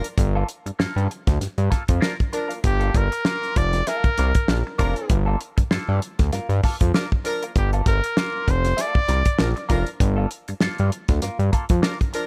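A bright solo trumpet with vibrato carries the melody from 2.7 to 9.7 seconds in this hypnotic G minor funk excerpt at 98 BPM, riding a swung sixteenth-note feel over a single Gm9 chord. Underneath, a damped 70s acoustic kit with a fat snare and tight kick sits up front beside a thick, detuned sawtooth analog bass with a filter sweep, while a clean, compressed semi-hollow electric guitar through wah and a punchy, tight horn section playing a second line fill out the harmony. The mix is dry.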